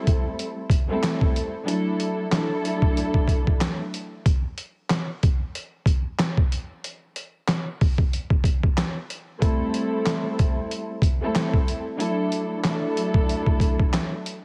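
Moody and dark, this boom-bap hip-hop excerpt, cut from a longer piece, moves at 93 BPM in 4/4 with a 56% swing on the sixteenths. A trip-hop, sampler-style drum kit runs from 0.1 to 14.4 seconds, its thumpy kick, medium-tuned snare, hi-hat and handclaps sounding pitched down, gritty and tape-warm, as if re-recorded in a small room, and it sits up front. A dark studio string section plays accompaniment, bowed and lush with vibrato, a woody body and a smooth top, filtered at both ends of its range, heard from 0.0 to 3.8 seconds and again from 9.4 seconds. The strings outline Am7 moving to Dadd9, and the drums carry on alone through the unharmonized stretch between the two string passages. The mix is dry and heavily compressed, giving it a squeezed, radio-like sound.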